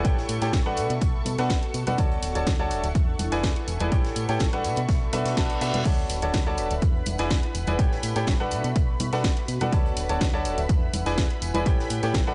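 A bright, brilliant grand piano sits up front with a smooth, vintage riff, washed in dub echo and a low-pass filter and carrying sidechain pumping, in this joyful, uplifting piano house excerpt in D major at 124 BPM. A punchy, tape-toned electronic kick anchors the 4/4 groove with studio reverb, joined by a layered garage kit with a cracking snare, hi-hat and crash, and a very quiet soft-mallet kit adding hall-like hi-hat and snare. Ringing tambourine and hard-handed congas sit in the background, while a round, fast-attack FM bass pumps underneath. Behind them, a silky analog string pad with ensemble chorus and vibrato holds sustained chords, and an airy, breathy pad with chorus and phaser adds a soft, detuned texture, both breathing with the sidechain. The harmony cycles through A7, Bm7, Dmaj7 and E7, and a reverse cymbal rises briefly from the background at 5.3 seconds, all set in a dark, warm mix with light small-room ambience.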